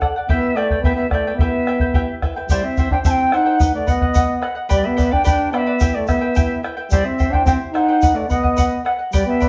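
An airy cane quena carries the melody in this wistful, earthy Andean folk excerpt, its mellow end-blown tone touched with vibrato and tongued notes that sound distant. Beneath it, a warm fingerpicked charango shimmers on its double strings, some of them octave-doubled, while a round, close bombo sits up front and anchors the straight 2/4 pulse at 108 BPM in E minor. From 0.3 seconds a mellow flugelhorn adds a smooth-topped second line in a classical style, placed up front. At 2.5 seconds a grainy, bright tube shaker joins with a small-room sound as the harmony moves through C, B and G before circling back toward E minor. A wet studio reverb surrounds the ensemble, heard from further back in the room, and the passage is cut from a longer piece.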